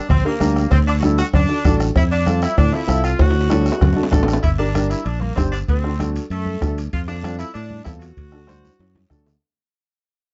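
A dark, warm production with light reverb frames this driving, passionate cumbia, a short cut from a longer piece moving at 193 BPM in a straight 4/4. A tight, bright, close-miked saxophone section carries the melody in a jazz style, while a woody, polished upright piano sits present underneath as accompaniment. Up front, a growly, direct fingered electric bass anchors the low end, joined by a soft-beater bombo from a small room, ringing metal-shell cowbell and timbales, medium-tuned congas played with soft hands in the background, and a raspy, dry guiro close by. The harmony moves through G minor, D, F and D7, and drum fills arrive at 3.2 seconds and again at 8.6 seconds. From 4.4 seconds the music begins to fade out as the second section unfolds.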